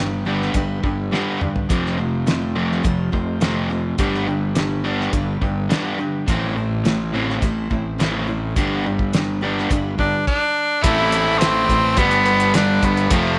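Gritty and driving, this straight-ahead classic rock passage at 105 BPM in 4/4 is cut from a longer piece. It rides a G, F and A minor progression on an up-front overdriven semi-hollow guitar riff, joined by a very quiet sludgy distorted guitar and backed by a faint, full-bodied picked dreadnought acoustic. Beneath them sit a fuzz-drenched fingered electric bass and a cloth-damped, thuddy drum kit with a fat snare, tight kick and dark cymbals that snaps into a fill at 1.1 seconds. An edgy, forceful tenor saxophone bursts forward with vibrato at 10.0 seconds, and a biting, double-tracked overdriven guitar joins in the background at 10.8 seconds, all set in a light small-room reverb.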